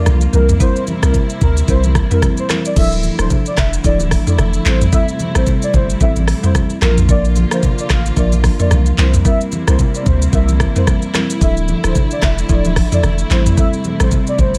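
Set in a digital ambience, this hypnotic, sultry afrobeats cut in D minor moves at 111 BPM with a swung 16th-note feel. An up-front, produced afro-pop kit with vintage 12-bit sampler grit, a knocking kick, hi-hat, handclaps, rim clicks, shaker, toms and crash plays alongside a deep, punchy sine sub bass with a pitch-drop attack, while very quiet congas with thick skins add small-room colour. A woody, dry, rustic marimba and a lush, bowed string section played sul tasto support a velvety sawtooth-and-triangle synth lead that carries the melody with chorus, delay and vibrato, over chords cycling through C7, Dmadd9, Am7 and Bb.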